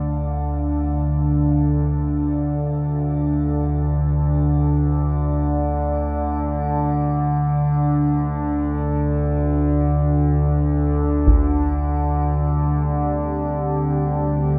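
Steeped in a moderate spring reverb, this desolate, cavernous dark ambient drone in free time and D minor, cut from a longer piece, sets an up-front, nasal analog drone with evolving pulse-width modulation and chorus under a deep, detuned sawtooth pad that fades in gradually and carries shimmer reverb, while solo taiko drums struck with hard sticks and softened by a low-pass filter land briefly at 11.3 s as the harmony moves from Dm to C5/D.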